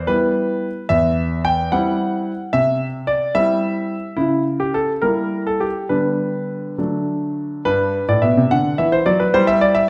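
A 6/8 pulse with gentle rubato carries this cheerful, graceful excerpt from a classical-period piano sonatina, where a solo concert grand, clear and up front with a worn character and deep bass, moves through minor-tinged harmonies before settling onto G at 7.7 seconds, all set in a wet recital hall reverb.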